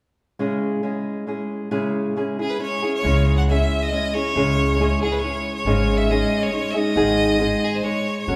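In a lilting 3/4 at 138 BPM with a gentle swing, this dramatic, passionate mariachi fragment in C# minor opens at 0.4 seconds with a small, fingerpicked nylon-string guitar up front, joined at 2.4 seconds by a single bright, intense bowed violin singing the melody with vibrato, and at 3.0 seconds by a dark, woody, thumpy pizzicato upright bass on gut strings, as the harmony moves from C#m through G#sus4 to G# inside the lingering reverb of a recital hall.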